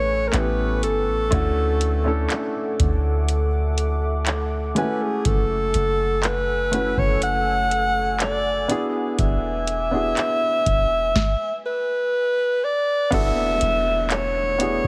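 A booming analog drum machine sets a slow, straight pulse just after the start, its deep kick, tonal snare, metallic hi-hats and handclaps sitting dry and up front in this late-night contemporary R&B fragment, cut from a longer piece. Underneath, a soft 808-style bass gives round, sine-like notes with a fast attack that decay into darkness. A warm grand piano plays intimate accompaniment with short sustain and audible action noise, while a moody ambient pad of detuned sawtooth unison layers holds sustained chords with slow attack, long release, chorus and its own reverb. Out front, a breathy alto saxophone carries the longing melody in a mellow pop style, with light vibrato, a smooth top and a tape echo trailing its phrases. The harmony moves through A9, Dmaj9, F#m9 and E7 before settling on E9sus4 at 13.1 seconds, where a faint electronic downlifter sinks into the background. The overall sound is close and dry, heavily compressed like a radio broadcast.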